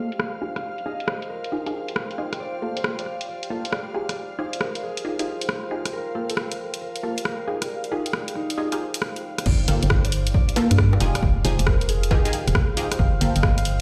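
A thumb-plucked concert harp rings out a melody over an ethereal, airy pad, a deep, moody ambient pad and punchy, detuned sawtooth chord stabs with chorus, phaser and tape echo, while a layered garage kit of bongos, rim clicks, hi-hats and crash builds under a filter sweep, all cycling between Fm9 and Gm9 in G phrygian. This bouncy, skippy two-step UK garage cut moves at 136 BPM with a 66% swing on the 16ths, and the pads breathe with sidechain pumping in a large, reverberant studio space. At 9.5 seconds the drop lands as a dry, analog electronic kick and a hollow, organ-like FM bass with a dark, up-front bite take over the low end.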